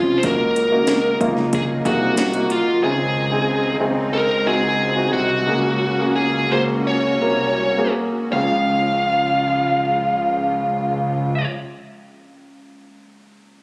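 A dark, overdriven lead guitar carries the melody over woody upright piano, lush bowed strings in the background and a fat, detuned analog bass in this hopeful piano-driven pop excerpt, where a punchy electronic house kit with cracking snare and metallic hats drops out at 2.7 seconds, the pace then slows, and the piano plays on alone after 11.5 seconds, all heard through a light club reverb with a phone-in-the-room sound.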